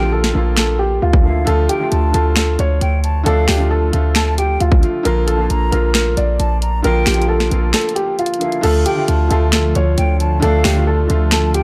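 Hip hop trap cut from a longer piece, brooding and menacing at 134 BPM in a half-time feel and D harmonic minor, with a mellow felt-muted upright piano carrying the melody through digital delay while a breathy concert flute with vibrato traces a delayed second line in the background. An open, brilliant grand piano supplies accompaniment, a punchy, heavy 808-style bass sits up front, and a trap kit of hard-clipped kick, sharp snare, bright hi-hat, finger snaps and crash cymbal, re-recorded in a small room, enters at 0.2 seconds. At 8.6 seconds an airy pad with chorus and a slow attack adds sustained chords in the background, and the mix sits in light reverb with a dark production.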